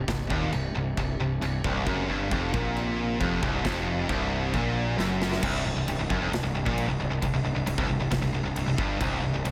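Stacked high-gain distorted guitars, one bright and up front, grind out a relentless, aggressive heavy metal riff over a growly fuzz bass, a very quiet double-tracked fuzz guitar and a faint, hollow, flute-like pad, while a big acoustic rock kit with a boomy kick, snare, crash and china drives a half-time feel until a drum fill at 5.0 s pushes into a power-chord section at 5.4 s, all in a small room ambience in this short cut from a longer piece.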